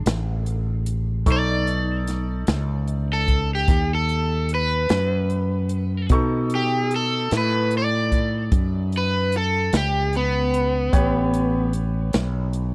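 Slow blues in 12/8 at 50 BPM, soulful and laid-back, this dry, close 1970s-style studio excerpt features an overdriven semi-hollow guitar carrying the melody from 1.3 s over a woody, brilliant upright piano with audible action noise, a direct, up-front fretless electric bass and an airy, polished big-band drum kit with punchy kick and medium-tuned snare, moving through E9, B9 and A9 chords.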